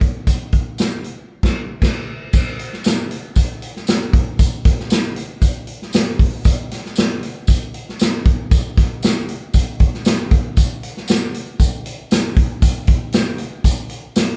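A big-band drum kit opens this soul piece at 0.0 seconds, with crash cymbal, hi-hat, kick drum and snare drum in a straight 4/4 feel that is danceable and warm. The kit sits up front with a natural, acoustic sound in a big room, its punchy kick and medium-tuned snare carrying the groove. A tambourine joins at 0.3 seconds and stays in the background, jingly and warm, with the feel of a smaller room. At 1.3 seconds the band hits an accent that leads into a longer passage, where drums and tambourine carry on together to the close. The whole performance has the feel of a band playing live in one room, touched with light reverb, and it is cut from a longer piece.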